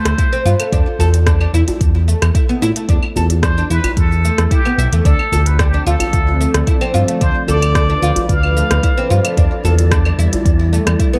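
A smooth, gliding synth bass sits up front in this short cut from an organic downtempo piece, its dark sawtooth-and-triangle tone carrying vibrato, portamento and a touch of tube saturation. Above it, a plunger-muted trumpet plays a forceful, jazz-style solo melody with a brilliant wah-wah edge and light vibrato, sounding distant and roomy through a digital delay, and it falls silent at 9.1 seconds. A plectrum-plucked fretless oud weaves woody, double-string arpeggios through the same delay. The rhythm pairs a deep, layered electronic kick with an overdriven organic electronic kit of claves, smooth hi-hat, rim click and shaker, while a djembe with metal rattles, struck by hard hands, sounds from a large room in the background. From 5.8 seconds a warbling, nostalgic lo-fi pad adds sustained chords with chorus and sidechain pumping, and at 6.4 seconds an airy, breathy wind-like noise texture drifts in behind it. 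The harmony moves from Dm7 through E5 and back to Dm7 before settling on Em7, all under light reverb and a dark, warm production, giving the music a mystical, meditative mood.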